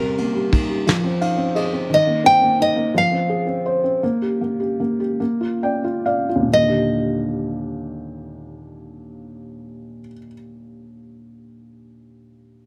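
Tender and hopeful, this brief acoustic folk-pop ballad in a straight 6/8 sets a bright, fingerpicked nylon-string guitar melody up front over a soft, boxy felt-muted upright piano with short sustain, while a dark soft brush drum kit of kick, snare and ride appears only from 0.2 to 1.7 seconds, and the pace slows between 1.9 and 6.5 seconds as the chords move toward an Ebmaj7, all set in a moderate large studio reverb.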